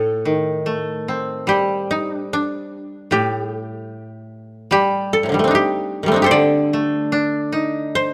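Captured with close, detailed microphones and light reverb, this brief 8.1-second passage cut from a longer piece of austere, calm Japanese chamber music pairs a woody, dry koto carrying the melody with a second up-front, fingerpicked koto in accompaniment, moving in a free rubato around 75 BPM in D in the sen mode.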